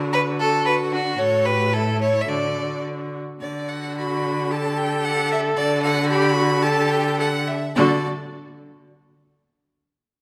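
Cheerful and graceful, this brief fragment of a quick classical-period movement for string quartet moves in 2/4 at about 102-115 BPM in D major, with a supple rubato and harmony that shifts from D through F#m/A and settles between D and Dadd11. A single bowed violin carries the melody with a rich, focused, close tone and vibrato, while a second violin plays a clear, smooth, even line beneath it from 0.1 seconds. A distant viola adds rich, smooth accompaniment, and an up-front cello anchors the bass, all framed by the lingering reverb of a recital hall.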